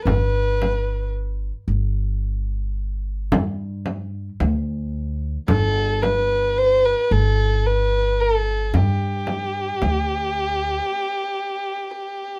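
A straight 10/8 pulse at 111 BPM, counted in eighths, drives this festive, passionate Arabic maqam ensemble piece in G maqam huzam, tuned to A4 = 443 Hz and cut from a longer piece. Up front, a single bowed violin carries the melody with a dark, woody, boxy sul tasto tone and vibrato, over a growly pizzicato upright bass with steel strings and a close, dry frame drum, all set in light reverb. The drum stops at 10.1 s and the bass at 10.8 s, leaving the violin alone until 12.4 s.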